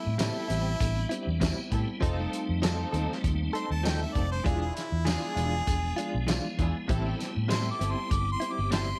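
A clear, jazz-inflected harmonica solo with light vibrato, scooped notes and tongue slaps opens this smoky, brooding straight-eighth soul blues in A minor at 99 BPM over a piping tonewheel organ with key click, light overdrive, chorus vibrato and a slow rotary speaker, soon joined by a dark, round, foam-muted fingered bass up front, distant lush bowed strings with portamento, bright clean direct guitar stabs carrying tremolo and slapback echo, and a warm small-room soul kit with fat snare, tight kick, hi-hat and tambourine, all moving through Am7, F7 and E7b9 before returning to Am7 at 6.9 seconds.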